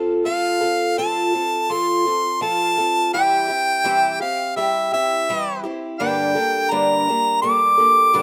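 A clear, punchy harmonica carries the melody from 0.3 seconds, singing in a pop style with vibrato and scooped notes that give this short rock fragment a wistful, dusty feel. Beneath it, a picked twelve-string acoustic guitar has already begun at the very start, its octave-doubled strings shimmering over a woody, boxy body and the slightly dulled tone of old strings. The harmonica sits as the louder, soloing voice, while the guitar supplies steady accompaniment in a straight four-beat feel. The chords move from F to C/E and settle on Gmadd9, lending the passage a gently unresolved, longing quality. Both instruments sound up front and intimate, captured outdoors with little reverb, so the playing comes across dry and close, as if cut from a longer piece mid-thought.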